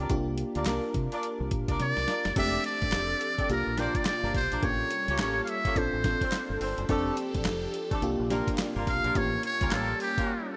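Swung sixteenths at 106 BPM drive this punchy, confident new jack swing R&B excerpt, where a gritty, thumpy sampler-style drum kit with handclaps and a round, dark fingered electric bass sit under a dreamy, chorused FM electric piano and loose, octave-doubled warm horn stabs; a buzzy, metal-muted trumpet takes the up-front melody as a drum fill begins at 1.8 seconds, a swirling, detuned phased sawtooth pad slips in behind it at 2.4 seconds, and bright 1980s-style digital production with lush hall reverb carries chords such as C9sus4 and A7b9b13 to a break at 10.3 seconds.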